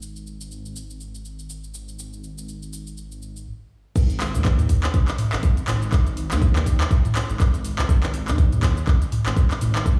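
A rumbling, saturated detuned saw bass pumps under a produced afro-pop kit of cabasa, handclaps, toms, crash and dark hi-hats in this spiritual, earthy afro house cut at 122 BPM in 4/4 with a 57% sixteenth swing, pausing in a brief stop at 3.5 seconds before a deep electronic kick lands with the drop at 4.0 seconds, all heard through the large reverb of a big sound system in a bare room.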